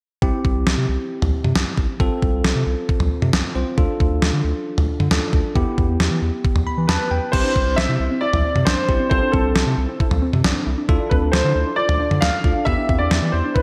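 A bright, 1980s-style digital production bathed in moderate, lush hall reverb carries this upbeat, nostalgic synth-pop in C major at 135 BPM. A detuned 8-bit drum machine with a thumpy kick and gated reverb sits up front over a round, deep analog bass, while a bell-like tine electric piano accompanies and plays a fill at 6.4 seconds. At 6.9 seconds an intimate, polished concert grand piano takes the melody with audible action noise, analog chorus and digital delay, and from 7.3 seconds a warbly, lo-fi pluck adds vintage arpeggios with a filter sweep in the background.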